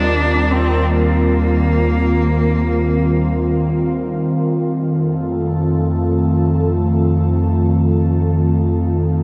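Ambient music in free time, spacious and reflective, where a rich, focused bowed cello with vibrato and delay sings a short melody until 3.9 seconds over an up-front, airy, breathy pad with chorus and a moving notch holding sustained chords that shift from Eb69 to F7 at 4.4 seconds, a filter sweep colouring the pad, a deep, round analog bass with ring modulation anchoring the low end, all wrapped in a wet cathedral reverb that sets this excerpt in a vast space.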